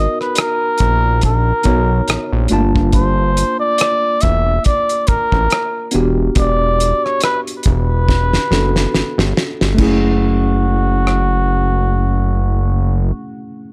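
Over a slow, swung sixteenth-note groove in 4/4, a cloth-damped, thuddy acoustic drum kit with dark cymbals, a fat snare and a tight kick sits close in a small, dry room, breaking into a fill at 8.1 seconds before dropping out at 11.3 seconds. A thick, detuned sawtooth analog bass with a filter sweep carries the low end up front, while a worn, slightly out-of-tune tine electric piano lays down minor ninth chords, opening on a rootless voicing, through its built-in speakers. On top, a veiled, breathy cup-muted trumpet sings a jazz-style solo line with light vibrato and tape echo, giving this introspective neo-soul excerpt its late-night glow.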